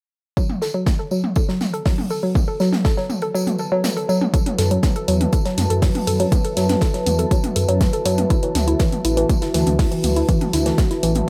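Lightly reverberant and pumping with sidechain compression, this melancholic, hypnotic melodic techno excerpt in F# minor runs at 121 BPM in a straight 4/4. A woody, wave-folded pluck with 12-bit grit, chorus, dub echo and a filter sweep spins arpeggios up front over a punchy layered electronic kick, which drops out from 3.3 to 4.3 seconds. Around them sit an airy, polished acoustic kit of hi-hat, medium-tuned snare and tambourine, a deep house kit of dark hats and toms, a moody, chorused ambient pad from 2.8 seconds, and a menacing, saturated detuned saw bass that swells in at 4.6 seconds, with the harmony moving from F#m to Dadd9 at 8.3 seconds.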